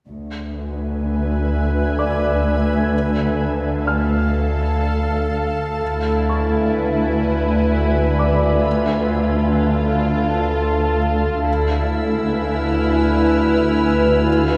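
Bathed in a church-like hall reverb, this tense, mysterious cinematic fragment in 3/4 rests on dark, woody cellos and soft-edged double basses holding a low D, joined by a detuned, evolving analog drone at 1.3 s, while a shimmering, ethereal pad sits up front with sustained chords, a present baby grand piano adds high texture in the background, a lush bowed violin section carries a narrow melody from 5.8 s, and a second, smooth-topped violin section joins far above at 11.5 s.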